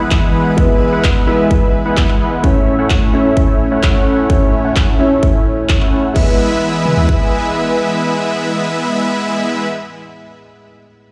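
Up front and huge, detuned supersaw chords carry a filter-swept riff through this uplifting, triumphant festival progressive house excerpt at 129 BPM in E major, pumping against a punchy, tape-warm kick with toms, crash cymbal and handclaps, a dark, boxy baby grand piano with audible action noise, and a thick background pad with chorus and phaser, all washed in lush hall reverb and the stone echo of a bare room.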